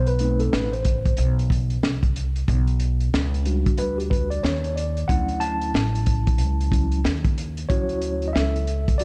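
A swung sixteenth-note groove sets a relaxed jazz-hop pulse in 4/4, driven by a crunchy breakbeat drum kit that arrives at 0.1 seconds with a punchy kick, a high-tuned snare and hi-hat, saturated and gritty with a rolled-off top in a dark small room. Underneath, a pizzicato upright bass with steel strings sounds woody and growly, sitting up front alongside the drums. A mellow tine electric piano carries the harmony and takes a solo across the whole passage, its clean tone coming through built-in speakers. The chords move from B7b9 to Bmadd9 and settle on Dmaj7 at 5.1 seconds, with a new section opening at 7.7 seconds. The overall production is dark and warm, with a small room ambience wrapping this short cut from a longer piece in an easygoing hip hop mood.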